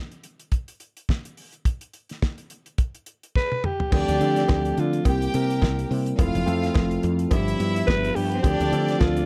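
A breathy, raspy alto saxophone carries the melody from 3.4 s in this glamorous, danceable disco excerpt, arriving over a drum fill after the damped 70s kit, with its fat snare and tight kick, opens alone; from 3.9 s a mellow tine electric piano, a round, woody fretless bass, a clear violin section with light vibrato and tape echo, and a metallic cowbell in the background join over a Dm7, C7, Fmaj7, G7 progression, inside a dark production with studio reverb.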